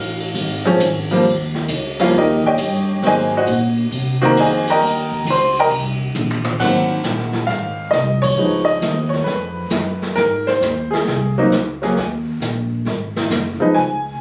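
This jazz piano trio swings easily at 134 BPM in 4/4, a relaxed, warm fragment in Ab mixolydian cut from a longer piece. A clear, slightly detuned upright piano sits up front with short sustain and carries the melody, taking a solo through the opening section. Beneath it, a woody upright bass plays pizzicato on steel strings. A distant, roomy brush kit with dark cymbals, a medium-tuned snare and a boomy kick enters just after the start and closes the first section with a fill at 6.2 seconds. The second section brings a band accent at 8.2 seconds as the changes move through dominant seventh chords on Ab and Db. Heard as if captured on a phone in a club, the sound carries a moderate reverb that gives it a casual, live-room feel.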